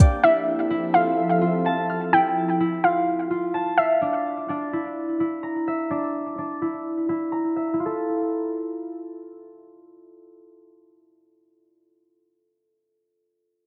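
A warbling, dusty pluck melody, an ethereal pad of airy sustained chords and fingerpicked, ringing concert harp arpeggios open this dreamy, blissful half-time hip hop excerpt together; the pad drops out at 2.1 seconds and the lo-fi, chorused, filter-swept pluck at 4.0 seconds, leaving the up-front acoustic harp, softened by a low-pass filter and digital delay, to carry on in light reverb until 12.1 seconds.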